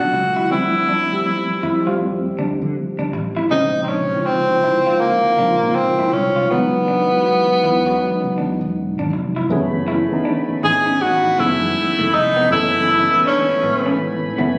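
Captured on a phone in a reverberant club room with compression, this late-night, introspective R&B and neo-soul excerpt at 80 BPM with a swung 4/4 feel moves through Dm11, A#m11, C#m11 and F#m11, as a breathy, whispered tenor saxophone with slapback echo carries the intimate melody up front over a worn, slightly out-of-tune tine electric piano with light overdrive, a twangy, slightly broken-up electric guitar through a small old amp tucked in the background, and a round, punchy fretless electric bass with ensemble chorus, until a vintage brass ensemble enters at 9.5 seconds with sustained chords.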